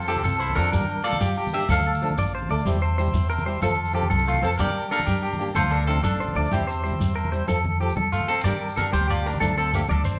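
A buzzy overdriven combo organ holds sustained chords in the background from the start until 7.5 seconds, beneath a twangy clean electric guitar's tremolo-tinged arpeggios, a growly pizzicato upright bass, grainy shekere, ringing agogo bells, thick-skinned congas and a boxy fingerpicked flamenco guitar with audible finger squeak, while an up-front, hollow-bodied semi-hollow electric guitar carries the melody through spring reverb in this danceable, carefree highlife guitar band excerpt in F major, a straight 12/8 at 125 BPM cycling through F, Gm, Dm and C/E in a live, moderately reverberant large studio room.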